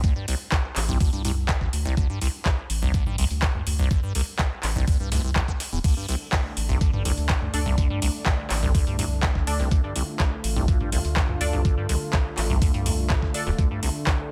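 A squelchy, resonant acid bass riff with phaser, chorus and delay opens this raw, hypnotic acid house excerpt in D minor at 124 BPM, over a round, deep analog bass, a thumpy up-front kick, and a gritty, compressed sampler-style kit of hi-hat and snare sitting in the background. Just after, at 0.3 seconds, a booming overdriven drum machine adds metallic hats, handclaps, toms and crash, while sidechain pumping moves the basses. A lush, detuned unison pad enters at 6.1 seconds, followed at 7.5 seconds by a nasal, band-passed chord stab with phaser and delay, all in a dry, close-sounding mix.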